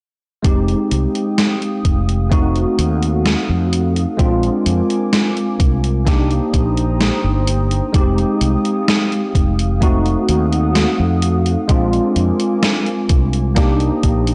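Hazy and woozy, this vaporwave excerpt drifts at 64 BPM in F dorian, with a clean, up-front tine electric piano carrying ensemble chorus and tape echo over a chord loop that moves from Fm9 through F7b9, Bb7 and Cm7. A round, punchy fretless electric bass with tube saturation anchors the low end, while a dark, detuned, warbling pad with slow attack, chorus and built-in reverb enters at 0.9 seconds. A thumpy electronic kick and a gated 80s drum machine playing hi-hat and a gated-reverb snare carry 12-bit sampler grit, all within a dry, gritty hardware recording whose top end is dulled.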